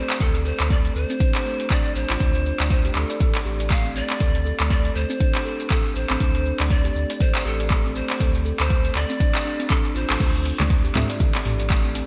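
Driving, spiritual afro house at 120 BPM in D minor, cut from a longer piece, where breathy, chiffy cane pan pipes with unsteady vibrato carry the melody over woody, ringing kalimba arpeggios with delay and sidechain pumping, a round sine sub bass and a deep electronic kick anchor a single Dm7 chord, an up-front afro-pop kit of metallic hi-hats, cabasa, handclaps, toms and crash adds gated reverb, and at 10.2 seconds faint, dark, nasal chord stabs and very quiet, dry conga hits arrive just before the pipes stop at 10.7 seconds, all within a bright 1980s-style digital production with light reverb and a faint mains hum.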